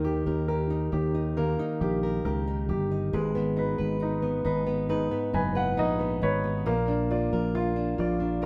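A woody, full-bodied, fingerpicked steel-string acoustic guitar spins arpeggios through this melancholic, heartbroken pop ballad, a brief 8.5-second excerpt cut from a longer piece. The tempo is a slow 68 BPM in a straight 4/4, set in G# harmonic minor, with the harmony moving from D# to G#m7 and then to A#. A growly, punchy fretless electric bass sustains low notes beneath it, while a clear, polished baby grand piano supplies accompaniment and steps forward with a fill from 4.9 to 6.7 seconds. All three parts sit up front, captured as a band playing live in one room. A moderate studio reverb gives the performance a sense of shared space.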